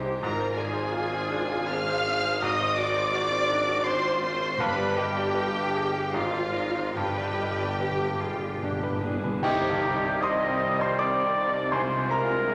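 In a rubato 3/4 at 71-90 BPM, this passionate, tragic romantic movement in C minor sets a clear, deep-bassed concert grand piano melody up front over bowed strings: a smooth, vibrato-rich violin section carrying the tune, a very quiet sul tasto chamber violin second line, an expressive viola section set distant, and a background of cellos, intense double basses and tuba. Background timpani enter at 4.6 s, dark cymbals, clash cymbals and concert bass drum join at 7.0 s, and at 9.4 s a band accent brings in a vintage-toned oboe, a roomy clarinet, a barely audible hollow flute section, very quiet trumpet stabs, and sustained chords from a bright, soft-attack trombone section and mellow French horns, inside a wet scoring-stage reverb.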